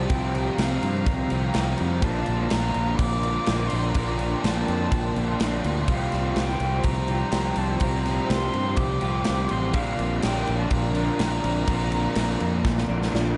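Wistful and blissful, this 13-second cut from a longer piece of shoegaze-leaning dream pop rock moves at 124 BPM in a straight 4/4, shifting between Csus4 and Bbadd9 chords. An airy silver concert flute carries the melody with vibrato and a crisp attack, its expressive line trailing into a diffuse ambient delay, while a hollow, nasal pad with a soft attack holds chorused chords in the background. Two overdriven guitars churn out riffs beneath them: a semi-hollow one bathed in reverse reverb and a raw, lo-fi garage guitar thickened by ensemble chorus. Up front, a growling fingered bass with a punchy, bright bite and a big acoustic rock kit with bright cymbals, a punchy kick and a medium-tuned snare drive the groove, closing with a drum fill at 12.6 seconds. A dark, very quiet clean guitar slips in with arpeggios at 5.9 seconds, and the whole mix is soaked in a huge, dreamy reverb with a 7.1-second tail and softened top end.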